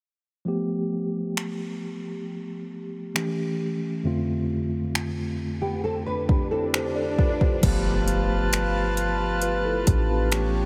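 A mellow tine electric piano, heard through its built-in speakers, opens this longing, moody contemporary R&B excerpt at 0.5 s on G9, A7 and Dm7/F chords. It is joined by an up-front electronic drum kit of soft kick, finger snaps, hi-hat and crash cymbal, overdriven and re-recorded in a small room. Thumb-plucked classical nylon-string guitar arpeggios with finger squeak, thickened by ensemble chorus and diffuse ambient delay, arrive at 5.6 s, soon followed by a background electronic swell that leads into an impact, and at 7.6 s a reedy, breathing pedal harmonium holds sustained chords over a deep, boomy 808-style sine bass, the dreamy mix soaked in huge reverb.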